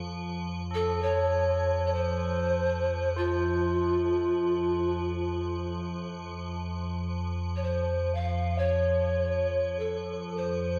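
Meditative and spacious, this free-time world meditation excerpt in F major carries an airy, hollow pan flute melody with vibrato and a crisp, chiffy attack, entering at 0.7 s and echoing through delay, over an icy, crystalline glass pad drone with chorus and a slow attack, while soft, solemn tubular bells ring until 7.0 s in a lush hall reverb within a dark production.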